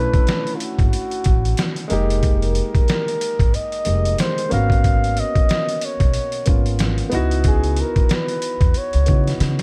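Small room ambience and a steady bed of vinyl crackle frame this short, mellow and cool jazz-hop cut from a longer piece. Up front sits a gritty, compressed, pitched-down sampler-style drum kit with a thumpy kick, a medium-tuned snare and hi-hat, its tape-warm grain swung on the sixteenths. An acoustic upright bass plays pizzicato with a woody, steel-string tone, while a vintage-sounding grand piano lays down smooth chords with long sustain, moving through Bm11, Fm11, Abm11 and Dbm11. Over this, a close-miked flugelhorn carries a breathy, dark-toned jazz solo with a soft attack and tape echo. The horn ends at 9.4 seconds just as a drum fill arrives.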